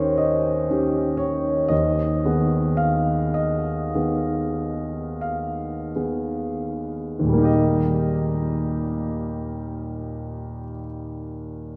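A slow, rubato pulse of 25-41 BPM counted in dotted quarters carries this romantic nocturne in 9/8, and it slows down through the first 7.5 seconds before settling into a new section. The mood is dreamy and nostalgic, set in Eb major with the tuning at A4 = 439 Hz. A clear concert grand piano plays alone from 0.0 to 11.8 seconds, ranging from Eb2 up to F5, its tone natural and up front with a deep bass and long sustain. The harmony opens on Eb7, shifts to Abm/Eb at 1.7 seconds, and resolves to Eb as the second section begins at 7.5 seconds. The whole is bathed in a cathedral reverb with a 6.5-second decay, placing the instrument in a vast, echoing space, and the passage is cut from a longer piece.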